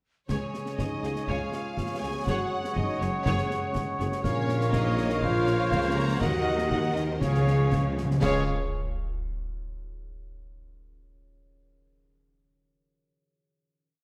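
Triumphant and adventurous, this heroic film-score piece at 121 BPM in Db major has lush, vibrato-laden violins carrying the theme over quieter violins and a chamber viola ostinato, while a dark cor anglais, clear clarinet, airy silver flute and very quiet trumpet hold chords; soft-edged French horns and trombones sustain the harmony, a ringing thumb-plucked harp spreads broken chords, and cellos, double basses and a mellow tuba drive the bass under a marching snare with bright clash cymbals and bass drum on the beat, as round calf-head timpani return with a fill at 7.2 seconds before a final chord rings in scoring-stage reverb until 10.2 seconds.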